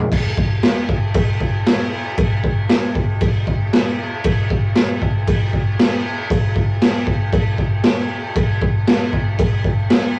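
Rowdy, swaggering rock at 117 BPM in a straight 4/4, this fragment of a longer piece features a raw garage drum kit alone from 0.1 to 10.0 seconds, its crash cymbal, medium-tuned snare and boomy kick sitting up front with a gritty, saturated, mid-forward character and a rolled-off top, caught in a small room with light reverb on a rough rehearsal-room cassette recording.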